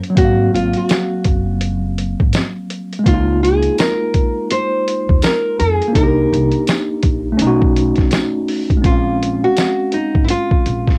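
Lo-fi hip hop in Bb minor at 83 BPM with a swung, hazy and nostalgic feel, built on a compressed, pitched-down sampler-style drum kit with a thumpy kick and gritty 12-bit texture, alongside a worn, slightly out-of-tune tine electric piano heard through a low-pass filter and cassette tape. From 0.2 seconds, a bright, fingerpicked nylon-string guitar carries the melody with audible finger squeak, while a woody pizzicato upright bass anchors the low end. A distant, jingly tambourine sits in the background of a light-reverb home cassette sound as the chords drift from Ab13 to a closing Bbm9 at 8.8 seconds.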